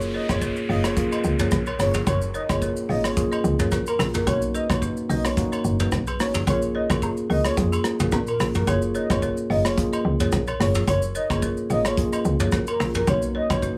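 A relaxed 109 BPM afrobeats groove in 4/4, with a gentle swing on the sixteenths, is set by a soft brush drum kit that sits up front with a tight kick, hi-hat, rim clicks, shaker and toms, backed in the background by agogo bells, woodblock, egg shaker and group handclaps. Underneath, a punchy log drum bass with a fast attack and decaying notes gives the low end a percussive, woody thump. A mellow, clean tine electric piano carries the chords in F# major, moving from F#maj9 to Bmaj7 at 4.3 seconds and on through A#m7 before returning home. A dry, buzzing balafon played with hard rubber mallets repeats a riff through a digital delay. Above it all, a round, full synth lead, layered with a sub octave and treated with chorus and vibrato, sings the melody, while a distant electronic downlifter sweeps through the opening 4.3 seconds. The mood is romantic and sunny, with light reverb giving this short cut from a longer piece a soft, intimate glow.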